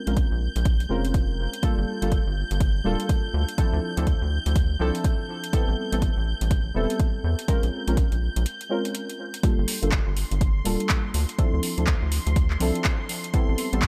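Mellow, detuned chord stabs with chorus, sidechain pumping and analog delay open this hypnotic, smooth deep house excerpt at 123 BPM in G dorian, joined at once by a silky string machine high above and a rubbery, hollow square-wave bass that pumps underneath. An up-front, overdriven electronic kick and a layered kit of handclaps and metallic hats, re-recorded in a large room, drive a swung 4/4 groove through Bbm9, Gm9, Dm9 and Am9, with a break at 8.5 seconds. The echo-heavy, mostly dry mix keeps the kick and the bouncy bass in focus alongside the dark, full-bodied stabs.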